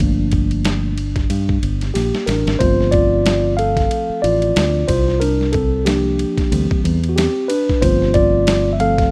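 A mellow tine electric piano solos from the start over a fingered bass and a gritty, pitched-down boom bap sampler kit with a thumpy kick in this smoky, dry jazz-hop cut at 92 BPM in G minor, swinging lazily on the 16ths, where a drum fill at 2.0 seconds leads from a Gm9 chord into a drifting run of sus4 chords, the round, dark bass sitting under the clean, up-front keys in a rough home demo mix.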